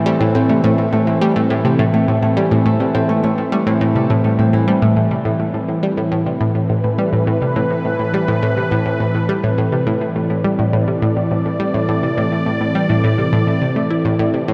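Cosmic and expansive, this ambient, sequencer-driven space music piece, cut from a longer work, moves at 104 BPM in A minor, with a nasal, round analog pluck riff under chorus, phaser and tape echo sitting up front, an airy, detuned sawtooth pad holding evolving chords with a slow filter swell, and a ringing, fingerpicked Celtic harp playing echoed arpeggios until 8.1 s, all bathed in a huge, dark reverb as the harmony shifts from Am to Amadd9 at 5.0 s.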